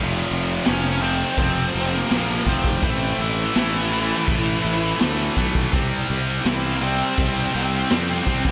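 Two bright, picked electric guitars open this brooding alternative rock excerpt together with a growly, fuzz-soaked fingered bass. One guitar is overdriven and the other is scooped and high-gain, both sitting in the background with slapback echo on their riffs. A raw garage drum kit joins at 0.3 seconds, up front and saturated, with a boomy kick, a medium-tuned snare, hi-hat and a pumping small-room character with a rolled-off top. At 0.7 seconds a distorted, high-gain lead guitar enters with a melody ranging from E3 to Db5. At a steady 83 BPM in straight 4/4, the chords move from F5 to Am and on to C5. A lush hall reverb gives the cathartic passage a big arena sound.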